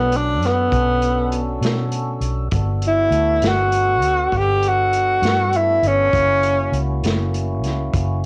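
A breathy, intimate tenor saxophone takes a mournful, smoky solo with vibrato and scooped notes until 7.0 seconds in this slow 12/8 blues in B minor at 66 BPM, moving through Bm7, Gmaj7 and F#7 over a fat, lightly overdriven tonewheel organ with key click, slow rotary speaker and cassette-tape colour, a dark, round, foam-muted fingered electric bass up front, and a muffled, lo-fi vintage drum kit with punchy kick, snare and hi-hat, all set in a small room on a home cassette recording that is cut from a longer piece.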